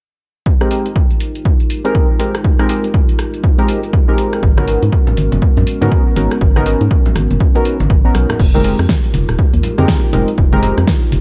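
Set in a digital ambience, this moody, hypnotic deep house excerpt in F minor rides a swung 121 BPM groove. A punchy, up-front electronic kick enters at 0.5 seconds, and a layered drum kit with a fat, tape-toned snare, hi-hat, rim click and crash joins it at 0.6 seconds to drive the track. Round sawtooth keys with chorus, tape echo and a filter sweep play stabs over a detuned, ring-modulated background pad, both pumping against the kick. At 4.4 seconds a hollow, organ-like FM bass enters as the chords move from Fm11 to Abm11, and low-tuned, thick-skinned congas follow at 4.6 seconds. A drum fill lands at 8.1 seconds, and a deep sub-octave ambient pad is barely audible in the final moment.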